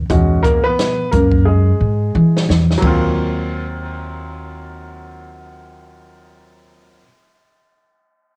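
Heard through light reverb on a home cassette recording, this cool, smoky, swung jazz-hop cut pairs a woody, thumpy pizzicato upright bass on gut strings holding the low end throughout with a polished, short-sustained upright piano colored by cassette tape that takes a solo until 2.8 seconds as the harmony moves from E69 to Ebm69, while a small-room acoustic jazz kit, also on cassette tape, with dark cymbals and a boomy kick plays a fill from 1.5 seconds before stopping at 3.0 seconds.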